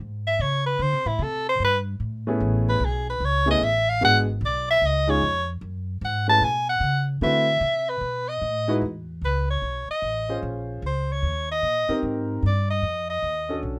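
Set in light reverb, this relaxed small-group swing and bop jazz passage, cut from a longer piece, opens with a woody, plucked upright bass, joined at 0.3 seconds by a clear soprano saxophone carrying the solo melody with light vibrato and a soft attack, while an intimate concert grand piano with deep bass and audible action noise enters at 2.3 seconds, all three sitting up front in a warm, natural sound.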